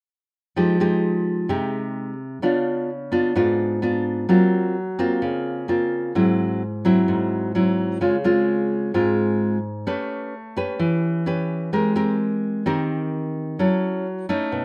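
A dark, deep-toned nylon-string guitar, fingerpicked and up front in a moderate studio reverb, plays alone from 0.6 to 14.6 seconds in this intimate, wistful bossa nova fragment at 129 BPM in a straight 4/4, tuned to A4 = 445 Hz and moving through rich chords from Fm9 and Db7b9 to Gbmaj7#11, Abaug7, A9 and a closing Gbm7.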